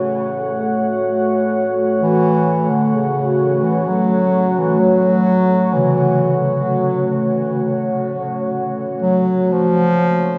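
Dark and unsettling, this dark ambient drone drifts in free time, cut from a longer piece. A deep, moody pad built from detuned sawtooth and sine layers with a sub octave sits up front, holding sustained chords with slow attacks and long releases, colored by chorus and its own reverb. A quartz singing bowl rings faintly beneath, pure and bright with slow beating, barely audible. From 2.0 seconds a mellow bass clarinet carries a smooth, soft-attacked solo melody in a classical style, its tone touched by tape echo. A gamelan-type bronze metallophone, struck with padded disc mallets, sounds briefly at the start and returns at 5.8 seconds with soft arpeggios whose paired tuning produces shimmering beats, also fed through tape echo. The harmony rests on F#m before shifting to A#m at 9.5 seconds, all bathed in a lush hall reverb that leaves the mix dreamy and soaked.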